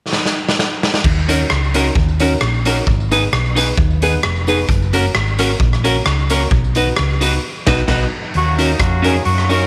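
Ska with a driving, mischievous feel, this short cut from a longer piece opens on a drum fill from a raw garage kit that is gritty and saturated, with a punchy kick, a medium-tuned snare, rim clicks, hi-hat and crash, all sitting up front in a pumping stone room and trailed by tape echo. At 1.1 seconds a round, dark hollow-body bass arrives, fingered and amped, joined almost at once by a clean, picked electric guitar, a dark upright piano whose woody, slightly detuned stabs carry audible action noise, and a very quiet, jingly tambourine kept close and dry. The band moves through Ebm7, Abm, Gb and B, and the tambourine drops out just before a band accent near the end of that stretch. At 8.4 seconds a clear, punchy horn section takes the melody with vibrato in a pop style as the harmony returns to Ebm7. A light reverb surrounds the mix.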